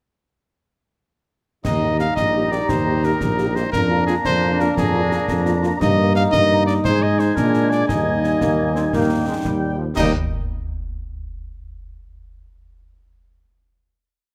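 At 1.6 s the trombones, mellow tuba and concert snare drum, bright clash cymbals and bass drum strike up together in a festive, rousing military-style wind band march in 6/8 at 115 BPM in Eb major, with a clear cornet soloing the melody up front over a warm woodwind second line, after-beat French horn chords and present trombone sustained chords that answer at phrase ends, all in a moderate large studio reverb before the band closes on a final chord at 10.0 s.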